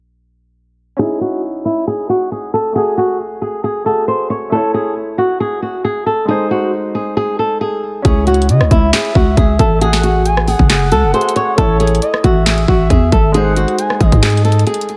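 A fingerpicked flamenco guitar carries the melody up front in this dark, hard-hitting trap excerpt, its fresh acoustic strings shaded by a low-pass filter and delay. The music sits in C# harmonic minor at 136 BPM with a half-time feel, cycling through C#madd9, F#madd9, A and G#, while a warm grand piano plays accompaniment lower in the mix, also filtered. A filter sweep runs through the opening until the trap drum kit and a growling, buzzy 808-style bass arrive at 8.0 seconds. The kit brings a hard-clipped kick, sharp snare, bright hats, handclaps and rim clicks re-recorded in a small room. Moments later a gliding portamento lead adds a second line above, a smooth, detuned blend of sawtooth, sine and triangle tones with wave folding, chorus, delay and vibrato, all set in light reverb over a faint mains hum.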